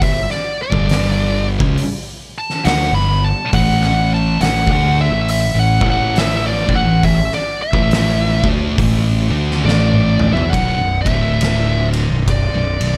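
A compressed, dark fuzz lead guitar sits up front and solos until 10.5 seconds in this brooding, sludgy stretch of stoner and doom metal, cut from a longer piece and played with a slow, swung 4/4 feel. Behind it, two thick fuzz guitars grind out the riff in the background over G5 and A5 power chords before the harmony moves to B5, D5 and Bm. A growly, overdriven fingered bass and an oversized low-tuned acoustic kit anchor everything below; the kit has a fat snare, a punchy kick and a rolled-off top in a bright stone room, with a drum fill at 9.6 seconds, all in a dry mix with little reverb.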